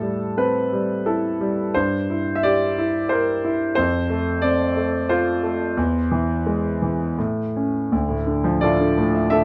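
Brooding and cool, this brief passage of lyrical classical solo piano is cut from a longer piece. A concert grand plays alone for the full 9.4 seconds, moving in a rubato triple metre that lets the phrasing breathe freely. Its tone is clear and open, sitting up front with a deep bass in the lower register, and its range runs from D2 to E5. The harmony moves through Am7, C7/G, F and E before settling on A, then turns to a Dmadd9 at 7.9 seconds as a new section begins. A moderate studio reverb and a dark, warm production surround the instrument.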